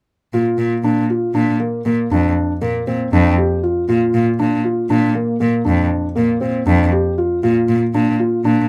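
From 0.3 s, a felt-muted upright piano plays soft, intimate arpeggios in Bb major while a clear, focused bowed cello with vibrato holds the bass beneath it, giving this hopeful, restless fragment of contemporary chamber music a straight 7/4 pulse at 118 BPM, captured up front by close, detailed microphones with light reverb.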